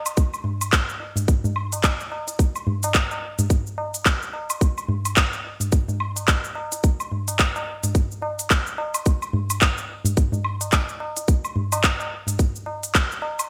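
A bright, 1980s-style digital production with light reverb and digital ambience frames this earthy, hypnotic downtempo groove at 108 BPM in 4/4, cut from a longer piece and swung at 59% on the sixteenths. An up-front electronic drum kit of handclaps, crisp hi-hat, shaker and woodblock runs through gated reverb from 0.1 seconds, while a tight electronic kick drum, re-recorded in a large room, sits prominently beneath it. High-tuned acoustic tabla with a short ring joins at 0.4 seconds, heard close and dry.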